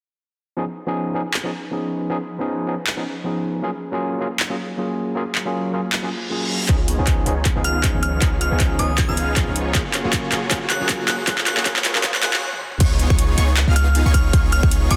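Playful and euphoric, this future bass excerpt moves at 157 BPM with a half-time, lightly swung feel, opening on a barky, gritty tine electric piano pumping under sidechain with vintage sampler grit and digital delay, while an ethereal, very quiet pad holds chords over a C#9 to F#maj9 progression. A reverse cymbal leads into 6.7 seconds, where a build-up brings in a boomy 808-style bass, a punchy overdriven kick and huge detuned supersaw chords under a filter sweep, joined at 7.6 seconds by a crystalline FM bell melody with chorus and phaser, all riding on metallic-hatted dubstep drums with crash, handclaps and toms, plus a drum fill, riser and swell. After a brief stop, the drop lands at 12.8 seconds with an impact and a lush background unison pluck arpeggio, all set in a lush hall reverb and a dense, heavily limited master.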